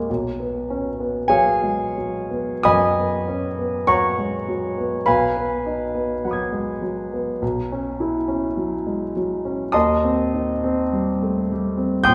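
Classical impressionist solo piano, this short passage drifts in a dreamy, hazy mood, its slow pulse loosened by rubato. A baby grand piano with a warm, natural tone plays alone from 0.0 to 12.1 seconds, reaching from a deep B1 up to Ab6. The harmony moves through lush colors, opening on B69, passing through Abm7/Cb and Gb11/Cb, and arriving at Eb6. The piano sits up front, yet a wet recital hall reverb with a 1.5-second decay places the listener further back in the room, wrapping each chord in a gentle haze. Tuned to A4 = 435 Hz and cut from a longer piece, the passage feels like a fleeting, suspended reverie.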